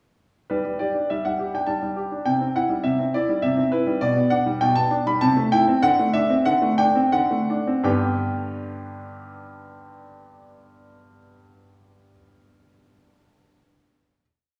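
Cheerful and elegant, this brief, complete classical-period piano sonatina in 3/4 unfolds with a flexible, rubato feel, its single-line melody floating over a broken-chord bass on a clear grand piano whose smooth, vintage tone and short sustain sit up front. The piece moves from G through C, G/B, Am/C and D7, slowing from 3.1 to 7.8 seconds before settling on a final G chord that rings until 12.0 seconds. A wet recital hall reverb places the listener further back in the room.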